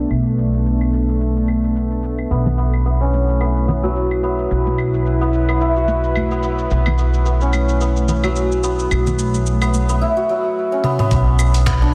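A bright, shimmering santur ringing up front with delayed arpeggios from 2.3 seconds leads this hypnotic, meditative organic downtempo excerpt at 109 BPM, set over a woody pizzicato upright bass, a tense, detuned string-like drone with sidechain pumping, a gritty, tape-warm sampler-style kit of claves, snaps, hi-hat, shaker and toms under a filter sweep, hard-handed congas in the background, and a thumpy electronic kick arriving at 11.1 seconds, moving from Bm7 to Aadd9/B within a lush hall.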